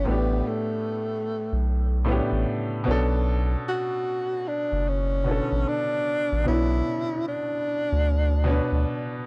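A dry, gritty cassette-tape sound frames this melancholic, nostalgic hip hop fragment, where a breathy, whispered tenor saxophone with vibrato and scooped notes sings an intimate jazz-style melody through analog delay over a woody upright piano and a thick, saturated sub bass, moving from A7sus4 to Bm9 at 2.9 seconds.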